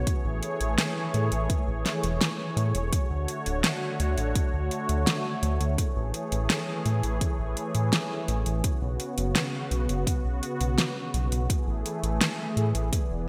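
A steady, straight 4/4 pulse at 84 BPM drives this uplifting, romantic synthwave excerpt in A major, carried by a punchy electronic kick and a pop drum kit with a fat snare and metallic hi-hats, both up front and given a small room ambience. Underneath, a round analog bass built from sawtooth, sine and triangle tones holds a deep, dark low end with a fast attack and sustained notes, its sound evolving and thickened by tube saturation. A smooth, detuned sawtooth pad sustains soft-attack chords throughout, shimmering with chorus and breathing with sidechain pumping. The harmony moves from Amaj7 to Dmaj7, back to Amaj7, then through Bsus2 before settling on Amaj7 again at 11.5 seconds. The whole passage sits in a lush hall reverb with a bright 1980s-style digital production sheen, the drums carrying a tape-warm, layered character.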